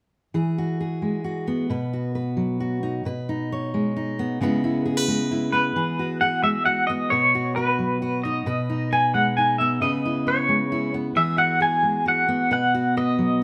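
A moderate stone-room reverb surrounds this live, single-room take of hopeful, anthemic indie folk in 3/4 at 133 BPM, where a full-bodied, up-front fingerpicked steel-string dreadnought lays out the Eadd9, B, G#m/B and C#m7 changes from 0.3 seconds before a twangy, slightly broken-up electric guitar through a small old amp, compressed and shimmering with tremolo, enters at 5.5 seconds to carry the melody as the arrangement builds.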